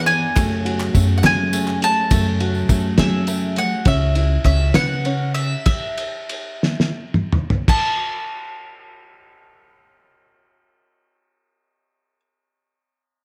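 Yearning, wistful indie folk in a lilting 6/8, where a bright, woody mandolin with plate reverb carries the melody up front over a hushed felt-muted upright piano, a full-bodied dreadnought guitar, a plunky fingerpicked open-back banjo, a growly pizzicato upright bass, and a muffled, gritty, cloth-damped drum kit with a fat snare, while faint crisp handclaps and a jingly tambourine sit in the background; the band slows from 3.9 seconds into a drum fill at 6.6 seconds, and once the drums fall away near 7.8 seconds the mandolin carries on alone until 12.2 seconds in a moderate large-studio ambience.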